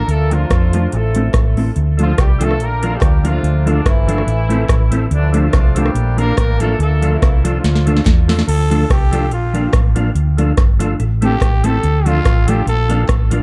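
Driving and energetic, this ska excerpt opens with a clear horn section carrying the melody through dub echo, over a booming, overdriven analog drum machine, a round hollow-body bass up front, a mellow electric guitar, very quiet group handclaps and, from 2.0 s, a percussive tonewheel organ with fast rotary speaker playing stabs, until a drum fill leads into a raspy, growling trumpet solo from 8.5 s, all set in a dark production with light reverb.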